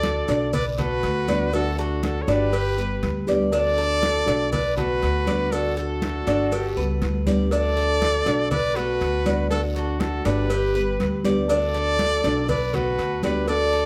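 A clear, up-front trumpet with vibrato and a plate-reverb sheen carries the melody in this sunny, danceable Cuban son and guajira cut, joined by a mellow, distant flugelhorn second line, a bright, metallic tres picking arpeggios, a fingerpicked nylon-string guitar with audible finger squeak, and a woody, growly upright bass, while soft-handed congas, a tight high-tuned cowbell and grainy maracas sit in the background with a very quiet raspy guiro, all in a moderate studio room as the harmony circles Bm7, D and G.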